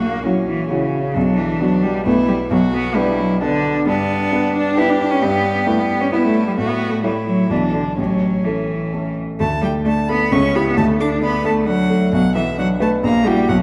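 A dark recording bathed in a long scoring-stage reverb frames this brisk, cheerful piano trio excerpt in 3/4 at 132 BPM, played with a lively rubato and moving from B minor into D major at 3.9 s. A clear, smooth violin carries the melody with light vibrato, sitting a little beneath the bowed cello, whose even, up-front second line sounds just as clean. A warm, natural grand piano supplies the accompaniment throughout, and a new section begins at 9.4 s before the passage closes back on F#7 over A# at 13.0 s.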